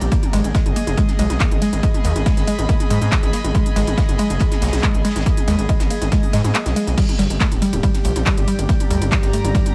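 A straight 4/4 pulse drives this hypnotic, intense stretch of peak-time techno, cut from a longer piece: a punchy, tape-tinged electronic kick sits up front, a layered techno kit adds smooth hats, claps, ride, crash and toms, and a very quiet acoustic soul kit contributes hi-hat and snare, with the kick dropping out from 6.5 to 7.0 seconds. A gritty, saturated sawtooth synth bass pumps against the sidechain, while a woody, wave-folded pluck riff with chorus, delay and 12-bit sampler grit plays in a narrow midrange. An airy, breathy pad floats above in light reverb, and a deep, moody ambient drone joins only at 8.5 seconds.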